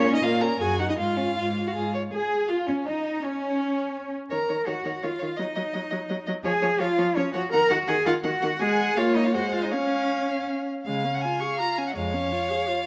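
Vinyl crackle sits over a close, detailed recording in a moderate recital hall, capturing a quick, dramatic and restless classical-period string quartet movement in 3/4 with a rubato feel, cut from a longer piece. A clear, focused first violin carries the high melody with vibrato, while a second violin adds an expressive line with portamento, and a smooth, even viola and a rich, up-front cello supply the accompaniment and bass. The cello stops at 12.3 seconds, just before the passage ends at 12.9 seconds.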